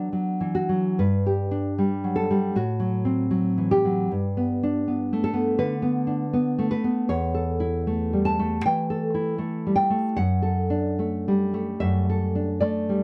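A dry, close recording with a light touch of reverb and a 1970s studio character places a single nylon-string guitar up front. This is a romantic piece for solo classical guitar, sunny and tender in mood, unfolding in 4/4 with uneven beats and a rubato feel that lets the phrases breathe. The guitar's tone is dark and woody, full-bodied with the character of old strings and a thumb-plucked touch, ranging from deep bass notes at E2 up to A5. The harmony moves from B minor through G and a diminished chord before settling toward A7 at 7.1 s and resolving onto D over F-sharp at 10.2 s. This brief passage is cut from a longer piece, lasting 13.0 seconds.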